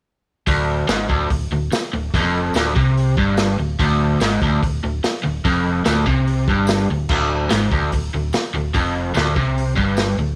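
At 0.5 seconds an overdriven electric guitar riff arrives together with a short-scale hollow-body electric bass and a crunchy breakbeat drum kit, setting off a swaggering, rowdy garage rock groove at 145 BPM in a straight 4/4. The guitar sits up front, bright, picked and double-tracked with a compressed edge, working its riff low in its register over a Dm7b5 chord. Beneath it the fingered bass is dark, round and punchy with an amped character, while the drums sound saturated and gritty in a studio room, with a tight kick, a medium-tuned snare, hi-hat and crash cymbals rolled off at the top. From 0.9 seconds a jingly tambourine plays close but in the background, adding a little shimmer to the rhythm. Studio reverb gives the whole band some space, and this short cut from a longer piece ends at 10.4 seconds.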